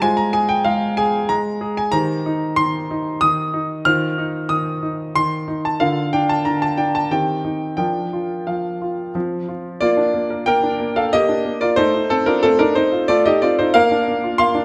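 In a straight three-four metre, this cheerful, elegant classical-period piano sonatina passage, cut from a longer piece, features a solo concert grand that sounds clear yet worn, with deep bass and a close, detailed, up-front presence set in a moderate recital-hall reverb, its opening phrase giving way to a new section at 9.8 seconds.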